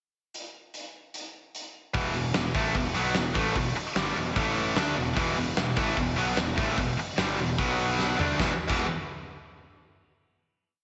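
Anthemic and swaggering, this short hard rock piece in straight 4/4 opens with a big rock drum kit playing a pickup bar alone, its fat snare and punchy kick up front with a rolled-off top. At 1.9 seconds two electric guitars crash in with a power-chord riff. A tight distorted guitar sits up front while a scooped, high-gain guitar with slapback echo stays in the background. A growly fuzz bass, picked and overdriven, drives steady eighth notes that double the guitar riff. The riff moves from E5 to A5 and back to E5, then through B5 and D5, before a drum fill at 8.0 seconds leads into a final E5 chord at 8.4 seconds. A lush hall reverb gives the whole mix a big arena sound, with its top end held in check.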